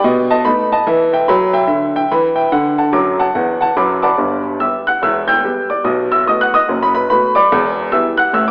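A swinging 4/4 stride feel at 145 BPM drives this exuberant jazz fragment, cut from a longer piece, where a lone upright piano with a woody, vintage tone and short sustain sits up front, ranging from E1 to G6 over chords moving from B7 and Em through D, G and back to Em7. The piano works in a fill from 3.0 to 4.2 seconds before the second phrase begins. The whole sound is bathed in a lush scoring-stage reverb and the wobble of worn cassette tape, its pitch drifting like an old AM radio broadcast.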